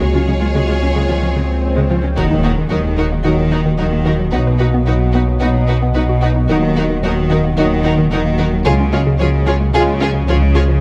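A straight 4/4 pulse at 111 BPM drives this tense, brooding hybrid orchestral and electronic film cue in Eb minor, cut from a longer piece, where a lush, softly bowed violin melody and a focused second violin line sound over background violas, French horns and a deep, detuned ambient pad with chorus and reverb, while a woody wave-folded pluck arpeggiates through chorus and digital delay above a bowed cello and double bass low end and a thick, saturated sub bass, as an electronic swell from 0.6 seconds lands on an impact at 2.2 seconds.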